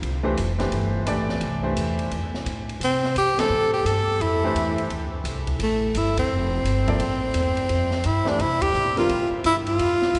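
A mellow tenor saxophone sits up front in this hypnotic, spiritual modal jazz fragment, entering at 2.8 s with a close-miked solo voice, soft attack and light vibrato. Beneath it, a woody, growly pizzicato upright bass and a warm, intimate concert grand piano, whose action noise is audible, hold a Fmaj9 harmony in F major, with the piano dropping out at 9.1 s. An acoustic jazz kit of hi-hat, ride, snare and boomy kick drives a brisk 172 BPM swing in 4/4, its cymbals dark and its snare tuned high. The whole band punctuates the single section with three accents. A long, wet cathedral reverb bathes the recording in the hushed glow of a church or concert hall, its top end rolled off.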